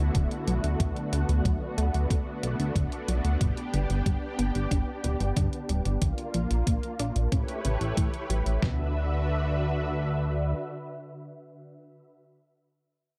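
Nostalgic and uplifting, this synthwave passage, cut from a longer piece, sets a silky, nasal analog string pad with ensemble chorus and sidechain pumping over a glossy, pulse-width-modulated chorused synth bass that also pumps, while a punchy unison pluck plays arpeggios with tape echo in the background and a detuned 8-bit digital drum machine with a thumpy kick and snare plays alongside a sampler-style electronic hi-hat, both tape-colored, until the drums fall away by 8.8 seconds and the pluck by 8.9 seconds, leaving the pad and bass to sustain the closing D6 in a dark, lightly reverberant mix.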